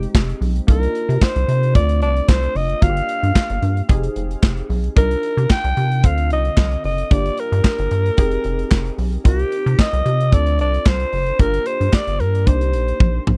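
Early-eighties boogie funk in C minor at 112 BPM, this danceable, dry excerpt sets a raspy, growling alto saxophone with tape echo up front over a rubbery, hollow square bass, a dark, detuned polysynth comp with chorus cycling through chords like Fm9, Cm11, Dm7 and Gm7, and a polished drum kit with a tight kick and handclaps that closes on a fill at 13.0 seconds.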